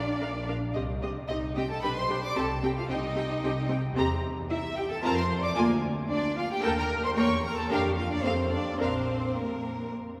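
Drenched in a long cathedral reverb, this short cut from a quick, cheerful classical-period movement for string orchestra moves at 112 BPM in a rubato 3/4 through Bb major, with a smooth, distant violin section carrying the melody while a second, intense violin section plays a clear second line from 0.0 seconds. A rich viola section adds expressive accompaniment with vibrato and portamento, while a focused cello section and an up-front double bass section with a soft attack anchor the bass. The double bass drops out at 9.3 seconds, and the harmony passes through an Edim7 before cadencing home on Bb at 8.8 seconds.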